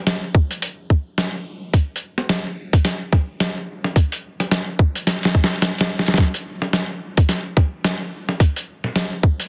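A swung 4/4 groove at 108 BPM drives this short glitch hop excerpt, its sixteenths pushed with a 59% swing that gives it a funky, gritty strut. An electronic kick drum sits up front, tight, layered and overdriven, running from 0.3 to 9.4 seconds. Alongside it, a boom bap sampler-style kit supplies hi-hat and a medium-tuned snare, pitched down, compressed and tape-warm, with the character of having been re-recorded in a small room. A drum fill breaks the pattern between 5.1 and 6.2 seconds before the groove carries on to the end. The whole is set in light reverb under a dense, heavily limited modern master.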